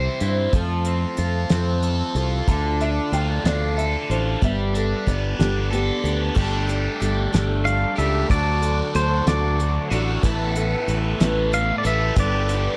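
Folk rock with a heartland rock heart, this hopeful excerpt moves at a slow 62 BPM in a straight 6/8, cut from a longer piece. A shimmering, octave-doubled twelve-string acoustic guitar picks out the accompaniment while a cranked, double-tracked stack guitar plays an overdriven riff colored by phaser, both sounding from the very start. Underneath, a growly, punchy fingered electric bass sits up front, and a cloth-damped drum kit thuds in at 0.2 seconds with a fat snare, tight kick and dark, rolled-off cymbals. A worn, slightly detuned upright piano adds a boxy second line in the background between 2.5 and 6.0 seconds, over chords moving from C and F through Dm to Gadd9. From 6.3 seconds a reedy tonewheel organ holds very quiet sustained chords through a slow rotary speaker with key click, and at 7.7 seconds a clean pedal steel guitar, played with fingerpicks and slide and shaped by volume swells, takes the melody as the harmony passes through Gsus2, D and Asus2, all set in light studio reverb.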